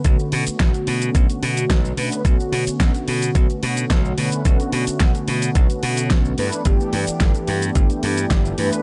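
A straight 4/4 groove at 109 BPM drives this short nu-disco clip in B minor, with a knocking, overdriven electronic kick sitting up front in the mix. A pop drum kit adds a fat snare, hi-hat and shaker, also overdriven and carrying a small-room character beneath the kick. A glassy slap bass, bright, punchy and direct, holds down the low end. Above it, a mellow synth brass part plays a detuned, round sawtooth line with chorus and analog delay, a filter sweep and moving notch lending a cosmic, sensual shimmer. The harmony rests on Bm9 before shifting to G6 at 6.4 seconds. The sound is dry and close, with a dark top end that stays below 11.0 kHz.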